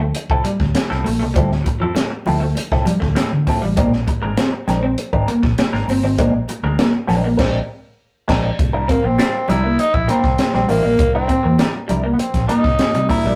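Funk at 100 BPM in a funky, energetic groove, this excerpt from a longer piece sets a foam-muted, round fingered bass and a compact cocktail drum kit with a punchy kick and high-tuned snare under a compressed wah-treated clean guitar and a slightly broken-up, lo-fi guitar riff with spring reverb, while distant, hard-handed congas sit very quietly behind, the band hits an accent at 7.4 seconds, and a raspy, gritty tenor saxophone enters up front at 8.9 seconds for a solo over the shift from Dm9 and Bb9 to C9, all captured in a rough rehearsal-room recording with tube saturation and a wet small-room reverb.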